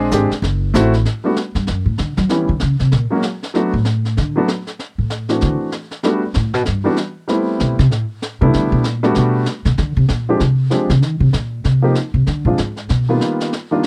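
A brief concert grand piano solo opens this relaxed, swinging jazz piano trio excerpt in G major at 193 BPM, its intimate, vintage tone carrying audible action noise and short sustain, before a woody, thumpy pizzicato upright bass solo takes over at 1.1 seconds, with a brushed drum kit's high-tuned snare and hi-hat sitting lower in the mix with a rolled-off top, all captured in a dry, close 1970s-style studio sound.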